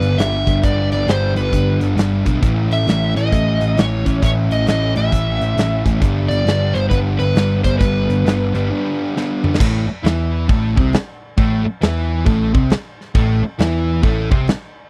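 A raunchy, driving stretch of blues rock and southern rock opens with every part at once: a dark, overdriven slide guitar carries the melody over a double-tracked fuzz guitar riff, a growly, amped picked bass and a big acoustic drum kit. It moves at 134 BPM in 4/4 with a swung eighth-note feel, in A mixolydian, shifting between G and A chords. The distorted fuzz guitar sits up front, while the bass adds a bright, punchy edge down low. The drums have a big-room sound with a punchy kick, medium-tuned snare, hi-hat, crash and toms, and a warm, smooth tone with a rolled-off top. The slide melody stops at 9.1 s as a drum fill closes a brief break, and at 9.6 s the band lands on an A5 chord for the next passage, which runs to the end of this cut from a longer piece. The dry, close mix has a 1970s studio character with little reverb.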